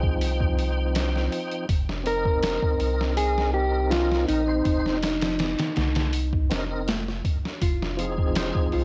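Smoky and cinematic, this short trip hop fragment cut from a longer piece moves at 81 BPM in F minor, with a home-cassette haze that rolls off the top end. A dark, clean electric guitar carries the melody until 6.8 seconds, its fingered tone roughened by 12-bit sampler grit and trailed by tape echo. Beneath it, a full tonewheel organ holds the Fm7 and Cm7/F harmony with chorus vibrato, key click, a fast rotary speaker and harmonic tremolo, while a filter sweep runs across it until 7.6 seconds. A deep, round sub bass sits up front alongside a compressed, pitched-down sampler drum kit with a thumpy kick, a medium-tuned snare and hi-hat, muffled by cassette tape. At 7.6 seconds a bright, ringing concert harp enters with fingerpicked arpeggios, echoing softly as the chords return to Fm7.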